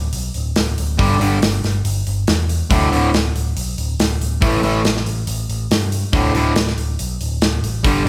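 This energetic, swaggering hard rock cut opens on an overdriven, picked electric bass at 0.0 seconds, its growly, punchy tone sitting up front. A tight metal drum kit joins at 0.1 seconds with hi-hat, a tight kick and a medium-tuned snare, placed mid-forward in a straight 4/4 groove. At 1.0 seconds two bright, picked electric guitars come in on the riff, one distorted and the other overdriven, moving through the power chords D5, G5, D5 and A5 before returning to D5. The band sounds as if it is playing live together in one large studio room, with a moderate reverb that gives the short passage a sense of space.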